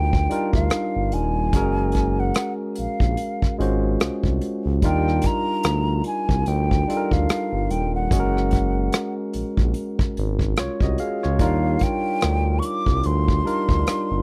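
Swung sixteenths at a relaxed 73 BPM anchor this soulful neo-soul R&B excerpt in Eb major, where an acoustic kit played with bundle sticks ticks out hi-hat, rim click and a punchy kick alongside a smooth, up-front sawtooth-and-triangle synth bass, while a bright, barky tine electric piano voices Ebmaj9 and Gbmaj9 chords beneath a breathy, hollow concert flute melody with vibrato and tongued notes, all captured in a dry, close 1970s-style studio sound.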